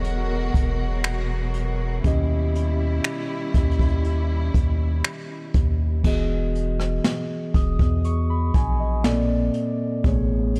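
A dark brush kit with a boomy kick, finger snaps and rim clicks sits up front in this tender, romantic contemporary R&B excerpt, over a deep, sine-toned 808-style bass and muted, warbling felt-like synth keys with chorus, while a lush, woody string section holds sustained chords until 6.0 s as the harmony moves from Emaj9#11 to Amaj9 in a small room.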